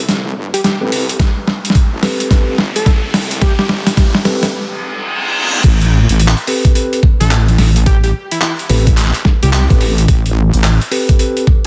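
A pitched-down, compressed sampler-style kit with a high-tuned snare, handclaps, hi-hat and crash opens this gritty, funky glitch hop excerpt alongside a heavy, saturated sawtooth wobble bass with chorus that stops at 10.8 seconds, and an overdriven, knocking electronic kick arrives up front at 1.2 seconds. A mellow tine electric piano plays sidechain-pumped stabs through dub echo, a punchy, catchy unison lead with a filter pluck appears in two short phrases, and an electronic riser and reverse cymbal build toward the drop at 5.6 seconds, all over a swung, dense, heavily limited mix with light digital ambience and vinyl crackle.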